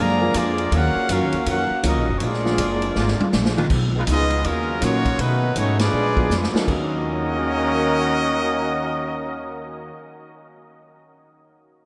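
Drenched in a wet cathedral reverb, this brassy, swinging big-band jazz excerpt sounds as if it were played in a vast, echoing hall, cut from a longer piece. At 161 BPM in Eb minor with a firm swing on the eighths, a clear, up-front trumpet section carries the melody with vibrato and a soft attack, while a punchy trombone section supports it on a second line. An upright bass gives a woody, thumpy pizzicato foundation on gut strings, and a very quiet grand piano and clean, picked hollow-body electric guitar fill in smooth accompaniment underneath. The distant, roomy drum kit, with its punchy kick and rolled-off top, comes in at 0.3 seconds and drops out at 6.8 seconds, adding fills along the way and a band accent at 5.8 seconds. A tight saxophone section slips in only briefly for sustained chords from 3.0 to 3.7 seconds, as the harmony moves through dominant colours such as Bb7b9b13 before settling back on Ebm9.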